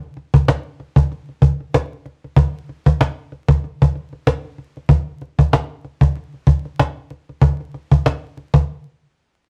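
Dark and moody, this short hip hop fragment cut from a longer piece moves at 95 BPM in 4/4, with a 58% swing on the sixteenths giving it a loose, laid-back sway. A single cajon carries the whole groove from 0.2 seconds, its woody, acoustic tone sitting close and up front with faint snares buzzing underneath. The cajon has a cassette tape character, and the home recording adds vinyl crackle and a moderate small-room reverb that keeps the sound intimate. At 8.7 seconds the cajon drops out for a brief break that runs to 9.5 seconds.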